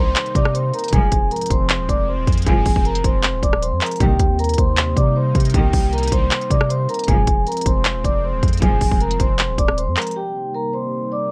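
A ringing, soft-mallet vibraphone, low-pass filtered and echoed with delay, carries the melody up front in this brooding, melancholic trap piece at 156 BPM with a half-time feel in C minor, moving between Cm7 and Fm. Beneath it, a detuned, evolving pad with chorus holds sustained chords, a deep sine 808 bass sustains long notes until 10.0 s, and a crisp trap kit of hard-clipped kick, hi-hat, handclaps and rim click sits close and dry with gritty vintage-sampler grain. Veiled, con sordino strings add dark bowed stabs from 0.9 s to 9.0 s, and only the vibraphone and pad carry on after the drums drop out.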